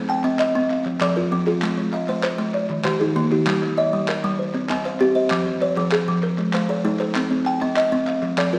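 A buzzing kalimba sits up front in this short cut from a longer southern African traditional piece, its bright, ringing thumbnail plucks carrying a hollow-box woodiness across a range from Eb3+29c to G5-29c. A second kalimba plays arpeggios beside it from 0.0 to 8.6 seconds, with short, woody thumb plucks that weave into the mbira-style interlocking cycle. A group handclap enters at 0.1 seconds, adding crisp, human, small-room percussion beneath the two instruments. The music moves at 130 BPM in dotted quarters in a straight 12/8, tuned to an F equiheptatonic scale and cycling through Cm, Fm, Ab, Eb and Gm. A recital hall reverb with a 1.4-second decay surrounds the performance, and worn cassette tape lends a warbling pitch drift that deepens the rippling, warm mood.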